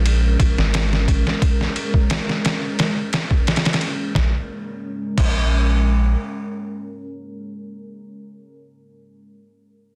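Smoky and cinematic, this short trip hop excerpt moves at 88 BPM in Bb minor, resting on a Bbm7 chord. A deep, dark ambient pad of detuned sawtooth unison with a sub octave sustains chords under chorus and built-in reverb, while a soft, round dub sub bass holds the low end until 6.2 seconds. Up front, a gritty sampler-style drum kit, pitched down, overdriven and carrying 12-bit grit, brings a thumpy kick, medium-tuned snare, ride and crash in a small room. It stops at 5.4 seconds, while the pad rings on to 7.6 seconds.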